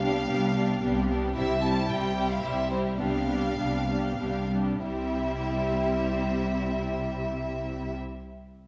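Urgent and restless, this quick classical-period movement for string orchestra moves in 3/4 at 91-113 BPM in C major, with a rubato feel and a slowing down from 0.6 to 4.8 seconds, and it is cut from a longer piece. A violin section carries the melody high in its range with light vibrato, a soft sul tasto attack and an intimate, close sound, while a second violin section sings an expressive, vibrato-rich second line beneath it. A viola section fills in a smooth, lush accompaniment, and the bass is held by a distant, even double bass section on a low C together with a cello section set in the background with a smooth top. All five parts play together from the start to 7.9 seconds, with the harmony rocking between G7 over C and C major. The sound sits in a wet scoring-stage reverb with a decay of 1.4 seconds, and the passage moves into a second section at 4.8 seconds.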